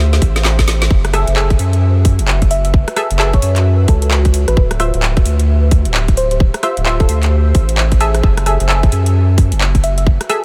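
A late-night, moody two-step UK garage excerpt swings over a tight, up-front electronic kick and a garage kit of woody snare, rim click, handclaps and metallic hats that opens with a brief fill, while a thick, saturated sub bass sits beneath punchy detuned sawtooth chord stabs with chorus and delay moving between Dm9 and F#m9, an ethereal pad pumps softly in the background through phaser and ensemble chorus, and a round, warbling FM lead with a vintage, keys-like tone enters at 2.5 seconds.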